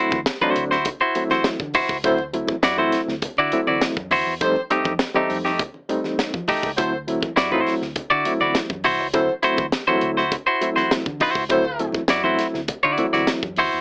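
A clean, compressed semi-hollow guitar accompanies this gritty, playful funk excerpt at 102 BPM in D mixolydian, joined by reedy overdriven electric piano stabs with medium tremolo, a tight acoustic drum kit with a high-tuned snare, a round, foam-muted bass and low-tuned congas in the background, and a mellow, roomy horn section with light vibrato playing a second line from 2.0 to 11.9 seconds, all moving from D9 to F9 and back under light reverb and an AM radio sound.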